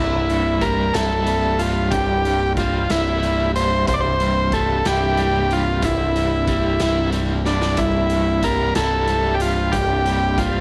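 Psychedelic rock in a straight 6/8, kaleidoscopic and hazy, cut from a longer piece. A reedy, up-front combo organ carries the melody with light vibrato and slapback echo, over very quiet, mellow organ-string chords, a double-tracked overdriven guitar riff with tremolo, and a growling, punchy bass. A gritty garage drum kit in a pumping stone room enters at 0.3 seconds and plays a fill at 7.5 seconds, all within light, small-room reverb.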